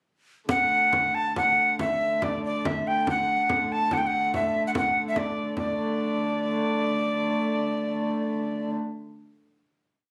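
Captured on a phone in a small room, this short medieval dance carries a moderate roomy reverb with a club-like wash and a compressed sound. In D major and 3/4, it speeds up from 138 to 156 BPM as an up-front alto recorder plays an expressive, ornamented modal melody with a wooden, breathy tone and crisp, chiffy attacks, over a dark, nasal hurdy-gurdy drone and a deep, dry frame drum struck with hard hands in an evenly spread pattern. The piece settles onto a final chord at 5.6 seconds, the drum drops out at 5.8 seconds, and the recorder and hurdy-gurdy ring on with an ancient, rustic air.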